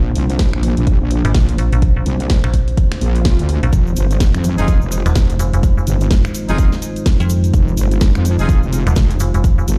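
Bass house at 126 BPM in F dorian, swaggering and aggressive, where a heavy, detuned wobble bass and a metallic FM bass from 1.2 s drive under a punchy, up-front kick, a house kit with cracking snare, hi-hat and finger snaps, and a moody, nasal analog pad with sidechain pumping, while a background electronic swell at 3.0 s leads into grainy cabasa and brilliant horn-section stabs with tape echo from 4.6 s, as the chords move from Bbadd9 to Fm7, all set in a stone-room reverb as if played on a big sound system in a bare room.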